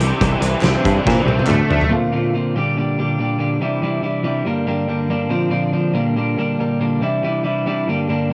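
A bright, twangy twelve-string electric guitar carries this upbeat, jangly indie rock excerpt at 140 BPM, its compressed, clean riff running the full 8.3 seconds through chords like Cadd9, Bbadd9 and Gm/Bb with a cassette-tape tint. For the opening 1.9 seconds it is joined by an overdriven garage guitar riff soaked in chorus and delay, a growly, foam-muted picked bass, and a loose drum kit with a fat snare and punchy kick that plays a fill from 1.0 seconds. From 0.6 seconds a faint, hollow group handclap, set back in a large room, also joins in. After that the twelve-string plays alone in a moderate studio reverb on this home cassette recording.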